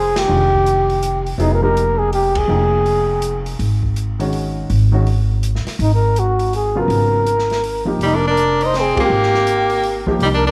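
Modal jazz in F dorian at 164 BPM in a swung 3/4, spiritual and cool in mood, cut from a longer piece, with the band hitting accents at 0.1, 2.3 and 8.9 seconds over Fm11 and Ab9sus4 chords. A breathy, whispered trumpet carries the melody with vibrato and a soft attack, pausing at 3.5 seconds and returning at 5.8, while a worn baby grand piano with audible action noise comps, a woody pizzicato upright bass anchors the low end, and an airy drum kit with dark cymbals and a boomy kick sits far back in the mix. At 8.0 seconds a bright, punchy tenor saxophone enters as a second line, all in a small room with light reverb.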